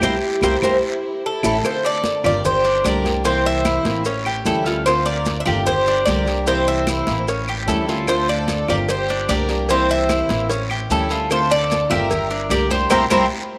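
Cuban son with a guajira lilt, this nostalgic, sultry piece moves in a straight four over a repeating cycle of C7, A7, Dm7 and Gm. A bright, metallic Cuban tres sits up front carrying the melody on its doubled strings, while a second tres picks arpeggios beneath it with a warmer tone. A rich studio violin section bows a smooth, vibrato-laden second line from a distant place in the background, and a flamenco guitar fingerpicks fresh-stringed accompaniment, complete with finger squeak. A thumpy, woody upright bass plucks the low end as congas, bongos and cowbell, claves, guiro and maracas fill in a soft, textured bed of raspy, grainy and saturated percussion. The band hits an accent across the opening 1.6 seconds, with a drum fill from 1.0 seconds, and accents again at 12.9 seconds, all within a moderate plate reverb on this short cut from a longer performance.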